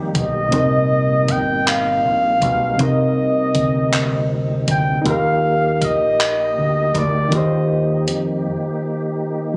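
Captured on a phone in a club-like room with compression, this short excerpt of slow, tender six-eight R&B in Eb major moves at 53 BPM, its chords drifting from Eb to Cm7 and settling on Ebmaj7 at 5.1 seconds. An up-front flugelhorn carries the melody in a jazz style with light vibrato and scooped notes, while a reedy, barky electric piano with light overdrive and spring reverb plays the accompaniment, and a clear tonewheel organ holds sustained chords in the background with key click, chorus vibrato and slow rotary speaker. Underneath, a round, dark dub bass and a dusty, gritty sampler-style kit of handclaps, hi-hat and thumpy kick keep the groove until a break at 8.4 seconds.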